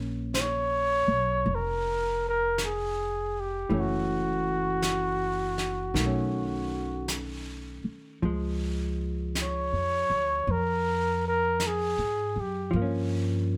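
A dark, clean hollow-body electric guitar and a woody pizzicato upright bass open this short jazz ballad excerpt together, settling into a slow, swung 4/4 at 53 BPM. At 0.3 seconds a flugelhorn takes the solo melody up front, its tone warm and softly attacked, with vibrato and scooped notes in a jazz style and a touch of plate reverb around it. A vintage brush kit joins at the same moment with brushed snare and hi-hat, its fat snare and rolled-off top sitting low in the mix as if in a small room. The fingered, compressed guitar comps through a harmony that moves from Bbm through Gbm7, B9 and Db before touching Gm7b5 near the end, while the steel-strung bass anchors the low register. The horn's line finishes at 12.8 seconds as the rhythm section carries on, and the whole piece has an intimate, wistful mood within a moderate studio ambience.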